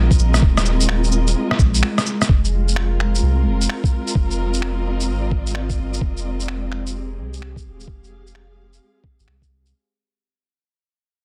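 A dense, heavily limited and fairly dry mix opens this rainy, melancholic future garage excerpt with swung sixteenths: a dark bowed string ensemble holds sustained chords with vibrato and portamento under gritty 12-bit sampler texture and sidechain pumping, while a round, mellow dub sub bass pumps up front beside a muffled, thumpy, pitched-down kick with studio reverb, and a compressed, sampler-style bed of shaker, cabasa, rim click and finger snaps ticks along, passing through a brief break at 1.8 seconds before shifting from Ebsus2 to Fm7 at 2.3 seconds and fading out.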